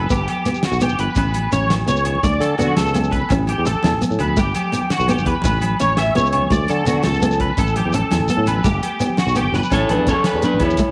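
A moderate echo-chamber reverb gives this sunny, carefree highlife excerpt a studio-room glow at 112 BPM in a straight 12/8, cycling through Gmaj7, Aadd9 and Dmaj7 in A mixolydian. Up front, a dark, slightly broken-up electric guitar picks arpeggios through ensemble chorus and slapback echo over a growly fretless bass bathed in lush chorus, while a classical nylon-string guitar is fingerpicked in the background. A damped 70s kit with a fat snare, tight kick and rolled-off top drives things alongside very quiet, compressed thin-skinned congas, a grainy close shekere and distant ringing agogo bells, and after a drum fill at 9.5 seconds a twangy second electric guitar takes the melody at 9.7 seconds.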